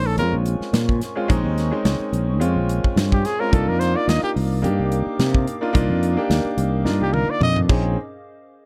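A dark, dry production frames this nocturnal, intense electric jazz fusion excerpt at 108 BPM with a light 16th-note swing, where a bright, forceful close-miked trumpet solos over a clear, intimate baby grand piano with audible action noise, a round fretless electric bass, a modern studio drum kit with a punchy kick that plays a fill from 6.9 seconds, and a warbling, lo-fi tape-like pad with chorus and reverb sitting in the background, all moving between Bbm11 and Cm11.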